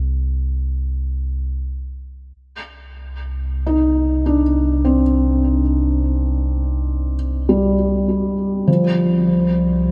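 A felt-muted upright piano, soft and intimate with audible action noise, enters at 3.7 seconds with delayed arpeggios, sitting up front against a round, deep analog bass that sustains a low C from the opening. This melancholic ambient excerpt in C minor drifts in free time, moving from an unharmonized start to Cmadd9 and settling on Csus4 near its close. Everything unfolds in a vast, echoing cathedral reverb that gives the sparse parts a spacious, lingering tail.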